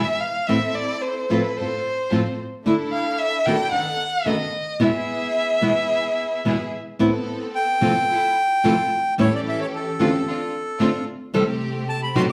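A warm, expressive bowed violin with vibrato and portamento opens this sultry, tense rubato tango in A minor at 111 BPM, carrying a soloing second line until 6.7 seconds over fingerpicked nylon-string guitar and lush, smooth symphonic string stabs, before a reedy, bright, close-miked bandoneon takes the melody from 7.6 seconds, all within a large studio's reverb.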